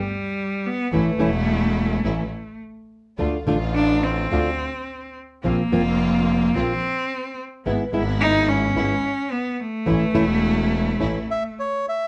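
This nostalgic, elegant tango fragment opens with a bowed solo cello, smooth and even with light vibrato, carrying the second line up front. Beneath it a lush symphonic string section adds expressive bowed stabs, and a focused double bass, also bowed and played with vibrato, anchors the low end. A thumb-plucked nylon-string guitar joins at 0.9 seconds with classical, warm accompaniment as the harmony moves from G through A, Dm, Bbsus2 and E/G# before returning to A. The rubato feel gives the phrases an unhurried, singing quality, and light reverb lends the whole a gentle sense of space. Just before the cut at 12.1 seconds, a reedy, dark bandoneon enters at 11.3 seconds with a brief melody, coloured by plate reverb.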